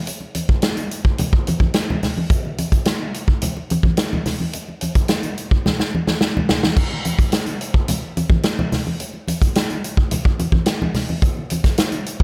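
A punchy, up-front big-band drum kit drives this gritty, strutting funk groove at 108 BPM in a straight 4/4, its medium-tuned snare, kick, hi-hat and crash cymbal ringing out with the natural air of a big room. Low-tuned congas sit beneath it with a bright, thin-skinned tone from hard hands, close and dry, while light reverb colours the track. A drum fill from 5.7 to 6.8 seconds leads the cut into its second section, which runs to the end at 12.2 seconds.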